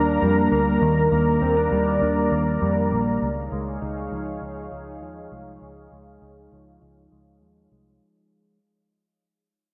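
A lush, detuned sawtooth pad sits up front with slow-blooming chords over a mellow, dark clean electric guitar's chorus-and-tape-echo arpeggios and a round, foam-muted vintage fingered bass, all bathed in huge ambient reverb in this dreamy, floating dream pop fragment that moves from Ebmaj7 to Dbadd9 at 3.2 seconds under a filter sweep and fade-out, the guitar lingering alone until 8.6 seconds.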